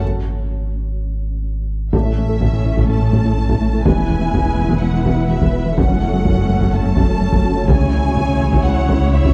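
A dark, warm scoring-stage mix frames this slice of a longer hybrid orchestral and electronic film cue, relentless and futuristic in mood. For the first 1.9 seconds a swarming, granular drone with its own built-in reverb hangs over a deep, round sine sub bass, and a brief drum fill closes that opening break. Then the strings arrive: a focused violin section with a smooth top carries the melody, a second, more distant and even violin section plays another line, a lush, expressive viola section fills the middle, and very quiet cello and woody double bass sections sit beneath. A fat, detuned analog bass riff with ring modulation and a filter sweep pushes from the background, hard-stick taiko drums strike from the background with a band-limited, vintage edge, and a soft, chorused pluck spins dark arpeggios. A felt-muted upright piano adds an intimate layer, its action noise audible, until 7.7 seconds, while the harmony moves from A through E and F#m to C#m.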